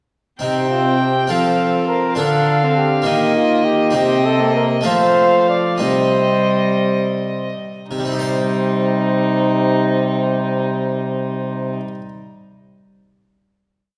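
In a straight 6/8 counted in dotted quarters at 54-68 BPM, this rustic, solemn renaissance-style consort dance in C dorian sets a mellow, soft-edged, close-miked cornet melody over a dark, nasal gut-string violin second line and a warm, reedy viola, both bowed by single players in chords that follow the tune's rhythm and in sustained chords, while a full harpsichord with two sets of strings rolls its chords and a clear, distant trombone holds the bass with light vibrato, the whole consort set in a church-like reverb and slowing from 3.1 to 7.9 seconds into a long final chord that the harpsichord carries on alone to 12.1 seconds.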